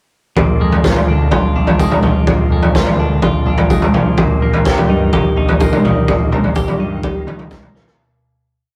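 A rough rehearsal-room recording with light reverb carries this trippy, hypnotic psychedelic rock groove at 126 BPM in Bb mixolydian, moving from Bb7 to Eb/Bb, where a saturated, boomy garage drum kit sits up front with a toms groove, a bright, twangy twelve-string electric guitar with phaser picks arpeggios, an overdriven picked bass holds a syncopated riff in the background, a very quiet, fat tonewheel organ with key click and slow rotary sustains a pad, and a jingly tambourine enters at 0.8 seconds, before the piece fades out from 6.1 seconds and closes on a drum fill at 7.7 seconds.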